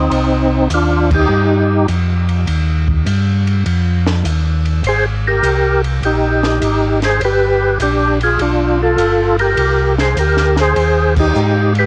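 A swung 4/4 groove at 101 BPM, with 68% swing on the eighths, carries this late-night, smoky soul jazz organ trio in C minor, cut from a longer piece. A percussive tonewheel organ takes the melody between C4 and C5, its fat, lightly overdriven tone marked by second-harmonic percussion, key click, chorus vibrato and a slow rotary speaker, with cassette tape color and analog delay. Beneath it, a mellow tonewheel organ plays the bass from G1 to Ab2, round and clean through its own slow rotary speaker, sitting up front alongside the melody. A compact cocktail drum kit enters at 0.1 seconds with a punchy kick, a high-tuned snare, hi-hat, and dark ride and crash cymbals, set well back in the mix and roughened by vintage 12-bit sampler grit and cassette tape. The harmony moves from Cm through Abmaj7 and G7 to Cmadd9, with band accents at 1.0 and 11.1 seconds, all within a small room ambience that carries the homespun feel of a cassette recording.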